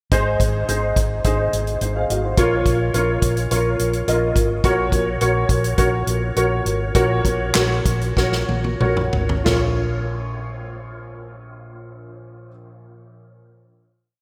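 A straight 4/4 pop backbeat, with snare layered with handclaps on a punchy, up-front acoustic drum kit carrying gated reverb, drives this earnest, piano-driven pop piece, as a woody upright piano with an ensemble chorus plays close-voiced quarter-note chords and short fills over a dark, foam-muted electric bass in eighth notes, all within a bright 1980s-style digital sheen and plate reverb, slowing from 4.6 s into a drum fill before the drums drop out at 9.6 s and the piano and bass ring out on a final chord, the bass fading at 12.5 s and the piano sustaining until 14.2 s.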